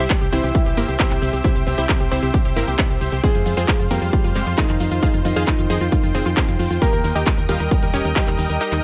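A straight 4/4 groove from a heavy, up-front electronic kick and a tape-warm techno kit of handclaps, smooth hi-hats and shaker, its hats and percussion pumping under sidechain, drives this emotional, soaring uplifting trance fragment, where a bright, detuned unison pluck carries the melody with delay over a punchy, dark FM bass and a lush supersaw pad holding sustained chords, both also pumping, while a clear, intimate concert grand piano adds a second line with dub echo in the background as the harmony moves from C to Fm to Eb.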